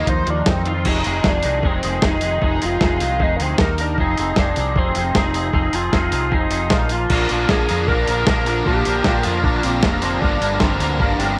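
A screaming, sawtooth-edged synth lead carries the melody through this cool, bittersweet indie rock excerpt at 154 BPM in F dorian, its distortion, phaser, vibrato and slapback echo giving it a guitar-like bite. Underneath, a clean, twangy electric guitar plays a riff, a growling overdriven fingered bass anchors the low end, and an up-front, gritty sampler-style drum kit, with a thumpy kick and tape-warm crash, hi-hat and snare, drives the straight 4/4 groove. A bright, crunchy overdriven guitar riff sounds briefly at the start, then returns at 7.1 s as the harmony lands on Bb and later Gm7, with light digital reverb around the parts.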